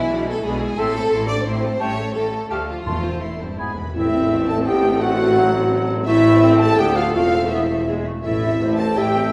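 This stormy, dramatic fragment of a fast romantic orchestral movement in triple time opens on the full string body and a mellow French horn section, whose sustained chords sit most prominently in the mix. High above, a lush violin section carries the melody in the background, while a rich chamber violin section traces a second line and bowed violas fill out the accompaniment. Beneath them, a clear, distant cello section joins a smooth, even double bass section on the bass, all with vibrato and a flexible, rubato feel. At 0.8 seconds an airy silver flute, a vintage-toned clarinet and a soft-attacked, roomy oboe add further lines, and timpani with calf heads enter at 2.9 seconds, leading into a fill just before the orchestra strikes an accent. At 4.0 seconds a very quiet, warm tuba reinforces the bass and a faint, bright tam-tam sounds, all carried in a reverberant scoring-stage acoustic.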